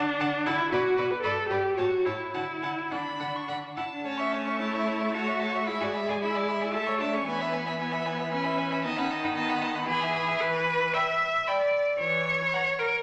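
A quick, spirited classical-period movement for string quartet in triple time opens with viola, cello and a second violin sounding together, and the first violin takes up the graceful melody at 0.2 seconds. Both violins are clear, focused and distant with vibrato, while the warm, expressive viola, gliding between notes, and the smooth, even cello sit up front. A wet recital hall reverb surrounds this rubato fragment as the harmony moves to new ground at 4.0 seconds, with the strings finishing by 13.0 seconds.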